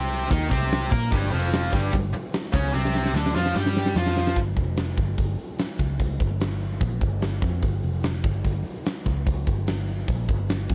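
A tight, bright, double-tracked distorted electric guitar riff and a dark, foam-muted vintage bass with a round, amped tone open this swaggering, gritty blues rock and southern rock fragment at 147 BPM. From 0.3 seconds they are joined by a huge arena drum kit with a fat snare, punchy kick and pumping room sound. The music moves through Cm7, Fsus2 and Csus24, and a drum fill from 2.7 seconds leads to the point at 4.4 seconds where the guitar stops, so bass and drums carry the Fsus2 passage. The mix is dry, with little reverb.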